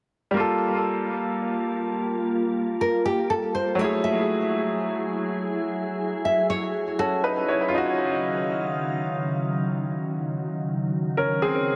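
Moody and late-night, this short R&B excerpt sets a clear, worn grand piano with tape echo over a glassy, ethereal FM pad with ensemble chorus, while a full-bodied nylon-string guitar fingerpicks arpeggios from 2.8 to 7.7 seconds, all sitting in a plate-reverberant, echo-heavy mix as the chords move from Gm9 to F#m9 to Ebm9.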